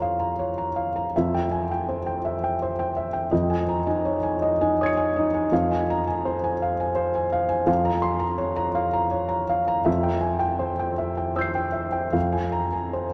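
A felt-muted upright piano plays alone from 0.0 to 13.1 seconds, its mellow, intimate tone sitting up front with audible action noise, spanning F2 to Db7. This reflective, wistful neoclassical minimalist piece in F minor moves at 82 BPM in 3/4 with uneven beats and rubato, tuned to A4 = 441 Hz, cycling through Bbm/F, C/F, Dbadd9/F and Fm over a steady F bass. Long cathedral reverb from a church or concert hall surrounds the piano in this fragment of a longer piece.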